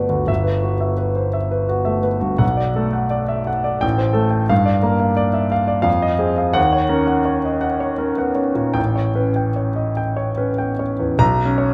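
Serene and dreamy, this impressionist solo piano passage drifts in 3/4 at 73-90 BPM with a free, rubato feel, cut from a longer piece. A clear grand piano, intimate and up front, spans a broad register from deep bass to high treble, its harmony gliding through minor-seventh colours such as Bm7, Am7 and Gm7 before settling on Bmaj7sus2 at 11.2 seconds. Close, detailed microphones catch a polished tone with audible action noise, set in a moderate recital hall reverb.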